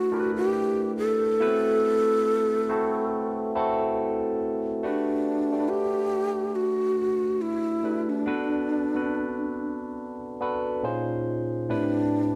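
A slow 70 BPM R&B groove in 4/4 with a lightly swung sixteenth-note feel sets an introspective, smooth mood, with a breathy, hollow shakuhachi carrying the melody up front, its vibrato and soft attack caught close. Underneath, a barky, bright tine electric piano played clean through a combo amp accompanies with a phaser, moving through lush extended chords such as G69, Gmaj9 and Bm7, and a shift at 4.8 seconds opens a second section. The whole short excerpt sits in a moderate echo-chamber reverb within a dark, warm production.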